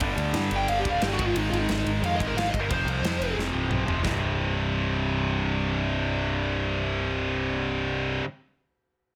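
A dark, distorted high-gain lead guitar solo enters at 0.6 s in this aggressive, epic heavy metal excerpt in C minor at 178 BPM, where an up-front heavy high-gain guitar and a bright, scooped second guitar drive the riff alongside a growling, overdriven picked electric bass, while an airy, polished modern studio drum kit with a tight kick and a medium-tuned snare plays a fill at 3.4 s and stops at 4.1 s, with light reverb.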